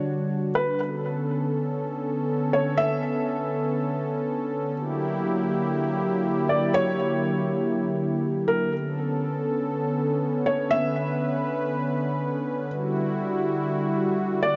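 A half-time feel at 121 BPM in 4/4 gives this spacious, ethereal hip hop fragment in B minor an unhurried float. A felt-muted upright piano, soft and intimate with audible action noise and a short sustain, carries the melody through a delay, while a detuned sawtooth analog pad with a smooth, soft attack holds sustained chords through chorus; both sit up front from 0.0 to 14.6 seconds. The harmony moves from a rootless Em9 through Bm9 and a tense F#7b9b13, then settles back on Bm9 before returning to Em9, all bathed in a lush hall reverb with a mellow, rolled-off top end.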